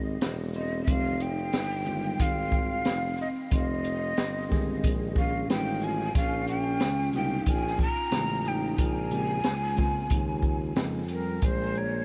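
A breathy flute carries the melody from the opening, its soft-attacked, unsteady vibrato sitting up front with a touch of delay, while soft-mallet vibraphone rings in the background and a distant, roomy tuba slides into scooped bass notes over Fm9 moving to Bbm9. This short, nocturnal jazz-hop excerpt in F minor sways at 91 BPM on swung sixteenths, as an acoustic drum kit with a boomy kick, high-tuned snare, hi-hat and shaker joins at 0.2 seconds and a worn, slightly out-of-tune tine electric piano slips in underneath at 0.9 seconds. The mellow mix is steeped in a huge, dreamy ambient reverb and vinyl crackle.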